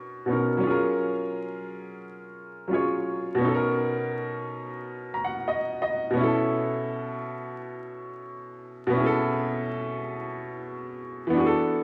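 A woody, smooth upright piano plays alone and up front through a cassette-tape haze and low-pass filter in this cosy, dreamy hip hop fragment at 87 BPM with a light 16th-note swing, moving through lush Bmaj9 and F#maj9 harmonies before a fill at 4.8 s leads into suspended ninth chords at 6.2 s, all wrapped in a moderate plate reverb, vinyl crackle and small-room ambience for a vintage feel.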